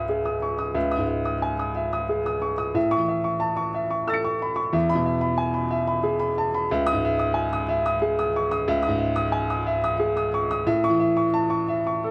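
Set in a loose, rubato triple metre, this short piece of neoclassical minimalist piano drifts with a reflective, wistful mood. A solo upright piano carries the entire 12.1-second passage, reaching from C#2 up to C#7. Its sound is intimate and woody, with a boxy, up-front presence and audible action noise that brings the listener close to the instrument. The harmony moves gently from C#madd9 to A and E, returns to C#madd9, and settles on A at 10.7 seconds. Light reverb and a dark production frame the playing, and the recording is cut from a longer piece.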